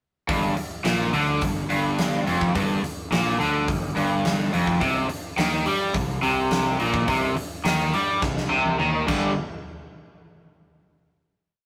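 A rough rehearsal-room recording with warm saturation and light reverb carries this swaggering, gritty blues rock power trio piece in a southern rock vein at 106 BPM, where an up-front, double-tracked, overdriven semi-hollow guitar picks a single-note riff over G5 and C5 chords, a growly fuzz bass walks along doubling it, and a big rock drum kit with bright cymbals and a punchy kick drives the groove into a drum fill at 8.2 seconds before everything lands on a final hit at 9.4 seconds.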